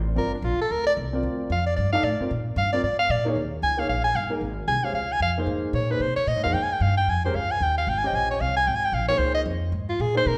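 A soprano saxophone leads this searching, open fragment of modal jazz, soloing up front with a light vibrato and a smooth top to its tone. The tempo is a brisk 226 BPM in 4/4 with a swung eighth-note feel, and the harmony moves from Gm7 and Bb7 into Eb mixolydian at 3.4 s, where Eb9sus4 and Fm chords take over. A pizzicato upright bass with steel strings sits close to the listener, its woody, warm sound anchoring the low end. A concert grand piano accompanies more quietly, its intimate, vintage character carrying deep bass and audible action noise. The recording has the wet reverb of a recital hall, with a faint mains hum beneath the music.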